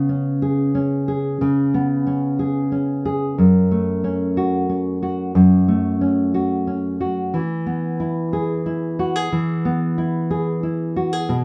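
A dark, full-bodied nylon-string guitar sits up front as the sole voice in this aching, dramatic pop fragment, cut from a longer piece. Its deep classical tone comes through thumb-plucked notes, with finger squeak adding a close, human texture. The music moves in 6/8 with a straight feel, drifting from a C#5 chord at the start to F#m at 3.4 seconds and then E at 7.3 seconds. The guitar spans a low, resonant range into its middle register, giving the passage weight. A moderate studio reverb surrounds it, lending the sense of a live room performance.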